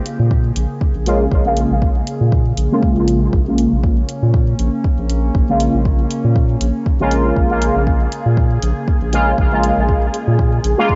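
Deep and hazy, this dub techno excerpt rests on a single Bbm7 chord, with a warbling, nostalgic pad holding sustained chords under chorus and reverb while an up-front, tape-warm electronic kick drum and an analog-tinged electronic hi-hat keep a lightly swung pulse. A round, dark analog bass breathes with sidechain pumping, and from 1.1 s a juicy, detuned polysynth plays resonant stabs through a constant filter sweep, chorus, phaser and dub echo. At 8.3 s an airy, wind-like tuned noise texture enters in the background, and the whole home-cassette recording sits in a digital ambience with its top end dulled.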